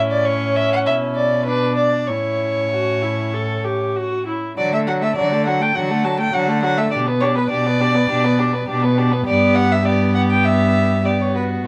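Rubato phrasing in common time carries this quick, graceful and lively classical-period movement for string quartet, a short portion taken from a longer piece. A dark, nasal violin sings the melody over a second violin line, a rich viola with light vibrato fills in the accompaniment, and a warm cello sits up front on the bass, while the upper three parts sound distant. Every part is bowed by a single player in period style with a reedy gut-string tone under light reverb, and a new section begins at 4.6 seconds.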